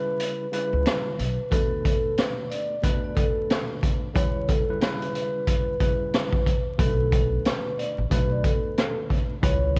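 A mellow, ringing soft-mallet vibraphone melody with slapback echo opens over a worn, slightly out-of-tune, lightly overdriven tine electric piano in this gritty, tough boom-bap hip-hop excerpt in B minor at 91 BPM with swung 16ths, as a saturated, boomy raw garage drum kit with 12-bit sampler grit comes in at 0.2 seconds (its kick held back until 1.5 seconds), a woody, thumpy pizzicato upright bass appears briefly and returns at 6.8 seconds, a barely audible finger snap flickers past, and the mix sits in a small room under warbling old tape, vinyl crackle and dulled highs.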